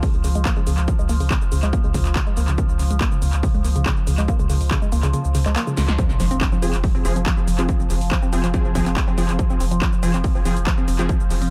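Driving peak-time techno at 141 BPM in F minor, dark and industrial in mood, heard in a short cut from a longer piece. An overdriven, heavy electronic kick sits up front alongside a thick, saturated sub bass and a woody, wave-folded pluck riff with a percussive, organic bite, while a resonant drone on F3 sustains with moving overtones under chorus and reverb. A punchy techno kit of handclaps, hi-hat, shaker and snare adds overdriven grit and tape echo, and several parts pump against the kick, giving the echo-heavy, otherwise dry mix a breathing pulse. The kick drops out at 5.1 seconds, a drum fill arrives, and at 6.0 seconds the drop lands on F minor with a very quiet electronic impact. Aggressive, detuned sawtooth rave stabs enter at 6.6 seconds, full-bodied yet mellow in their decay, trailing reverb and tape echo over the driving groove.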